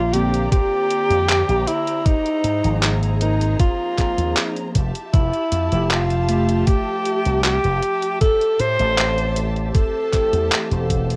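A breathy alto saxophone leads this woozy, faded vaporwave piece with a jazz-style solo of scooped notes, subtone and vibrato, soaked in tape echo and plate reverb. Beneath it, a bright, punchy slap bass with an envelope filter and a thumpy electronic kick sit up front, while detuned 8-bit handclaps and hi-hat, warbling lo-fi synth keys with phaser, chorus and tape echo, and a lush bowed string section in the background fill out the texture. The rough home-demo mix carries a cassette-tape haze, and the saxophone drops out at 10.9 s just before the piece cuts off.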